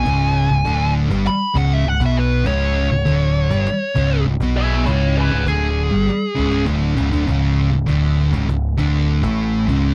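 A dark, up-front fuzz lead guitar, soaked in wah, distortion and slapback echo, takes a solo over this sludgy, ominous stoner and doom metal excerpt at 100 BPM before dropping out at 6.6 seconds, while two thick, distorted fuzz guitars grind out the riff, a round, punchy overdriven electric bass with tube saturation sits prominently alongside them, and a snappy cajon played with soft hands stays in the background, adding a fill from 6.1 seconds as the piece moves into its next section at 7.3 seconds, all captured in a dry, close 1970s-style studio sound.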